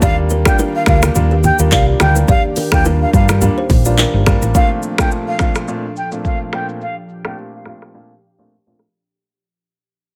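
A round, punchy hollow-body electric bass sits up front in this sunny, breezy afrobeats excerpt at 106 BPM in Bb major, joined by soft-handed congas and bongos and a woody kalimba riff with delay, all of which drop away around 4.5 seconds as the music moves from Ebmaj7 to Bbmaj7 and a filter sweep and fade-out begin, while a deep house kit with a deep kick, dark hats, snaps, claps, rim clicks and shaker, a distant, mellow flute melody with chiff and delay, an intimate concert grand with audible action noise, and a breathy detuned pad with chorus carry on toward a break at 7.9 seconds.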